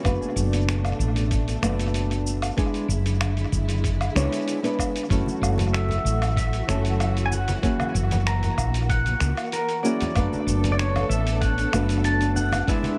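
A sunset chillout groove in a straight 4/4, wistful and smooth, this excerpt drifts over a steady pulse. A dark, small-sounding nylon-string guitar is fingerpicked through tape echo, while a lush, bowed string section with vibrato holds sustained chords close in the background. Up front, a woody fretless electric bass sounds round and hollow, anchoring the low end alongside a thumpy, compressed electronic kick. A gritty, dusty sampler-style kit adds finger snaps, hi-hat, shaker and woodblock, re-recorded in a small room and sent through tape echo, and very quiet ringing congas struck with hard hands join at 5.3 seconds. At 5.7 seconds a clean pedal steel guitar takes the melody, played with fingerpicks, slide and volume swells and trailing dub echo, as the harmony moves from Bm7/F# through E7/F#, F#m7 and F#7 before returning to Bm7/F#.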